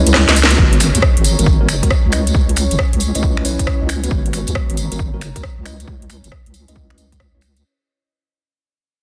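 UK garage in a skippy two-step groove at 136 BPM, this moody fragment of a longer piece swings its 16ths and moves between C#m9 and G#m9 chords. It opens with a brief break and drum fill before the electronic kick drum enters at 0.6 seconds, punchy and overdriven, sitting up front beside the layered garage kit of bongos, finger snaps, metallic hi-hats, rim clicks and a cracking snare with soft clipping in a small room. A deep, dark wobble bass with chorus holds the low end just as prominently, while a jingly, band-limited tambourine adds vintage shimmer. A mellow tine electric piano plays clean stabs through delay, and a smooth, detuned sawtooth pad sustains chords in the background with chorus and sidechain pumping. A very quiet, warbling tape-like pad lends a nostalgic lo-fi haze, and the dense, heavily limited mix fades out from 0.6 seconds to the close at 7.6 seconds.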